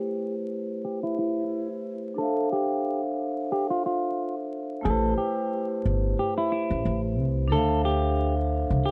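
A clean, hollow-toned semi-hollow electric guitar carries the melody through tape echo in this reflective, dark hip hop excerpt at 90 BPM in A minor, backed by ringing hard-mallet vibraphone and joined at 4.9 seconds by a woody, thumpy pizzicato upright bass on gut strings, while Am7 and Dm7 alternate over a lightly swung 4/4 and a filter sweep runs through a gritty, dry recording with vinyl crackle and studio reverb.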